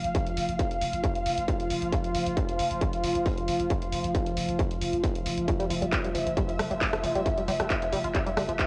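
A distorted, up-front electronic kick drives this hypnotic excerpt of peak-time techno at 135 BPM alongside a growling, buzzy 808-style bass, a techno drum kit of handclaps, rim clicks and warm hats, a deep, moody dark ambient pad droning under an ethereal, airy pad, and a tight sawtooth sequenced riff with chorus and tape echo that enters at 5.5 seconds, with most parts pumping with sidechain and coloured by cassette tape and a moderate spring reverb.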